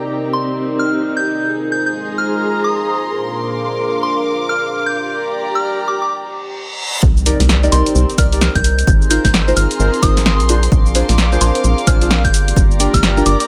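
A skippy, swung two-step garage groove arrives at 7.0 seconds as a reverse cymbal lands on an impact: a punchy electronic kick, a drum machine's hi-hat, shaker and snare, and a rubbery, hollow square bass drop in, with deep, mellow chorus-and-phaser chord stabs following a moment later, while a smooth analog pad, veiled con sordino strings and a pure FM synth bell melody carry a late-night minor chord cycle from the start of this light-reverb excerpt.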